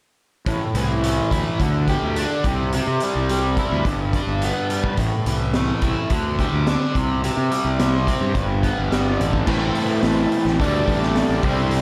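Soaked in a dreamy, lush hall reverb, this trippy, mysterious psychedelic rock excerpt in A minor moves at 107 BPM, with an up-front, double-tracked semi-hollow guitar riff that is bright and overdriven through a flanger, a dark, round fuzz bass, and a raw garage drum kit with a punchy kick, high-tuned snare and dark cymbals, cycling through Am, Dsus4, C and G before a reedy combo organ with light vibrato enters at 9.5 seconds with sustained chords in the background over an Amadd9.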